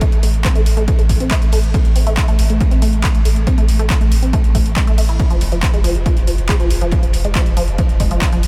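Opening at once on a punchy analog kick with a large-room sound, a squelchy resonant blip pluck riff with phaser, delay and sidechain pumping, and overdriven techno handclaps and hi-hats, this relentless, driving peak-time techno excerpt in A harmonic minor at 139 BPM adds a deep, saturated sine sub bass pumping under a low-pass filter from 0.1 seconds, while a dark, dry acoustic soul kit of high-passed hi-hat, ride and snare sits in the background of a small, lightly reverberant room.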